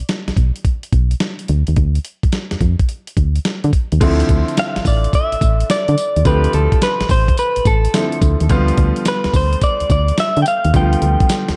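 A swung sixteenth-note new jack swing groove at a bouncy, punchy pace drives this R&B excerpt, as a gritty, sampler-style drum kit with thumpy kick, tambourine and crash joins a round, fast-attack FM bass up front from the start, before a clear, short-sustained grand piano enters at 4.0 seconds and a clean, direct-recorded electric guitar carries the melody from 4.6 seconds with subtle chorus and tape echo, all within a dark, lightly reverberant production.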